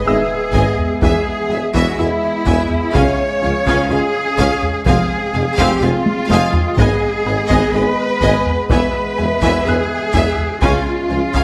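Up-front, lush cello section carries the bass with a rich, focused bowed tone, anchoring this vast, futuristic excerpt from a hybrid orchestral and electronic film score in a straight 4/4. Around it, a violin section holds a high melody in the background while a second, distant and intense violin line, a very quiet viola section, and a smooth double bass section fill out the bowed strings, joined by dark, roomy French horns on sustained chords and a tuba adding weight low in the mix. A hollow, flute-like pad with chorus sustains chords beneath, a very quiet, squelchy filter-pluck synth with phaser runs arpeggios, and a worn vintage grand piano with delay adds texture in the background. The opening lands on a huge sub drop impact that lasts until 1.0 seconds, and heavy-stick taiko drums enter at 0.5 seconds, with a drum fill between 6.1 and 6.8 seconds. The harmony cycles through G#m, E, C# and Fm before returning to G#m, all set in a reverberant recital hall.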